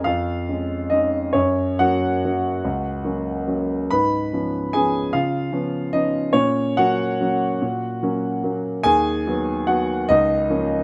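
A lilting waltz in three, shaped with flexible rubato, this graceful, sparkling classical fragment features a solo grand piano, warm and natural and set up front in light reverb, ranging from low bass to bright upper register over a gently moving progression that opens on a C#/E# chord and settles on A#m/C# by 10.1 seconds.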